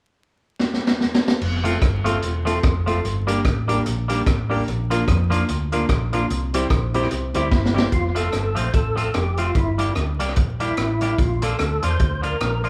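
A swung ska groove at 147 BPM in 4/4, with the eighth notes bouncing along in an upbeat, lively mood in F major. A vintage drum kit opens at 0.6 seconds with a fill, its punchy kick, medium-tuned snare, rim clicks, hi-hat and dark crash cymbal sitting up front with a dub echo. A round, hollow-body fingered bass arrives at 1.4 seconds as the chords move through F, Gm, Bb and C. A bright, scooped semi-hollow guitar provides clean, picked accompaniment, while a worn, woody upright piano adds boxy, slightly detuned stabs with audible action noise until 7.9 seconds. At 7.4 seconds, just ahead of a second drum fill, a fat, lightly overdriven tonewheel organ takes the melody, its key click, percussion, chorus vibrato and slow rotary speaker giving it character. The band sounds live in one large studio room with moderate reverb and a layer of vinyl crackle, and this excerpt is cut from a longer piece.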